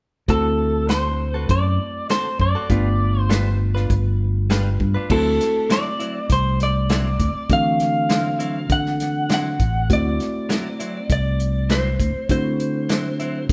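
From 0.3 s, a gritty, swaggering straight-eighth soul blues in D mixolydian struts along at 100 BPM, with an up-front, slightly broken-up electric slide guitar carrying the melody over a growly fingered bass, a tight soul drum kit of crash, hi-hat, kick and snare, a barky, reedy electric piano coloured by phaser, and clean, direct-recorded guitar stabs bathed in spring reverb, the band playing live in a stone room as the chords move from D7 to G7 before landing on D9 at 5.1 s.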